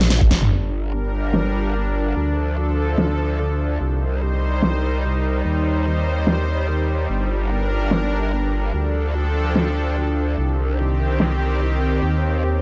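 A growling, wobbling bass sits up front through this chaotic, menacing slice of heavy wobble dubstep, its formant-filtered, saturated tone thickened with chorus and overdrive as it moves between G1 and Eb2. The track runs at 146 BPM in 4/4 with a half-time feel and a light swing on the sixteenths, anchored in G minor. A big-room electronic drum kit with a huge, layered snare, hi-hat, toms and crash opens on a fill, every piece of it softened by low-pass filtering. A snarling, distorted sawtooth bass flashes in for a single accent on G1 at 0.3 seconds. From 0.5 seconds a lush, detuned supersaw pad carries sustained chords that pump against the sidechain, cycling through G minor, D minor, C minor and Eb6. Behind it all, a deep, moody ambient pad with a sub octave and built-in reverb lingers in the background, giving the dark production a faint sense of space.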